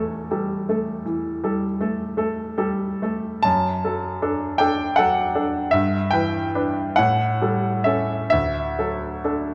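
Serene and tender, this short excerpt from a romantic classical nocturne moves in a rubato 12/8 at roughly 42-54 BPM in D major, with a solo baby grand piano ranging from D2 to A5. The piano sits up front with a clear, natural tone and short sustain, set in a wet recital hall reverb of about 1.8 seconds within a dark, warm production. The harmony drifts from A7/E through D/F# and Em7/G to A7 before settling on D at 8.3 seconds.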